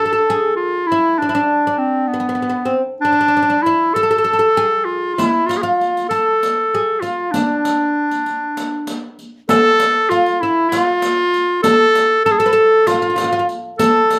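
A bright clarinet leads this soulful, hypnotic Turkish makam ensemble piece, carrying the melody in a classical style from B3 to A4, up front in the mix. Alongside it, an acoustic fretless oud, plectrum-plucked on double strings, plays a woody, deep second line, also placed up front. The music moves in 7/8 at 195 BPM counted in eighths, with a straight feel in D makam nikriz, tuned to A4 = 441 Hz. A riq enters at 5.2 s, its jingles sounding distant, as if heard in a large room. A new section begins at 9.5 s, and the recording sits in a moderate studio reverb as a passage cut from a longer piece.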